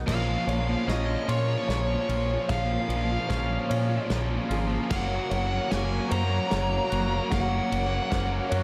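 Brooding and cathartic, this slow post-rock excerpt moves at 50 BPM in a straight 6/8, set in Bb minor and built as a single build-up running from 0.1 to 8.6 seconds, with a drum fill stretching across the whole passage. A reedy, breathing pedal harmonium holds sustained chords in the background while a felt-muted upright piano, very quiet and boxy with audible action noise, spins soft arpeggios above, and a twangy clean electric guitar adds compressed, scooped arpeggios through spring reverb and delay. Underneath, a growling fingered bass sits up front with overdrive and a punchy attack, joined at 0.1 seconds by a cranked, double-tracked stack guitar driving a bright overdriven riff. A nasal lead guitar with a parked wah carries the melody high above, its overdriven tone trailing into delay, while a loose indie drum kit with a tight kick, medium-tuned snare, crash and ride plays in a small, mid-forward room. 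The harmony shifts from Bbmadd9 to Gb at 4.9 seconds, and the whole dreamy mix is soaked in plate reverb.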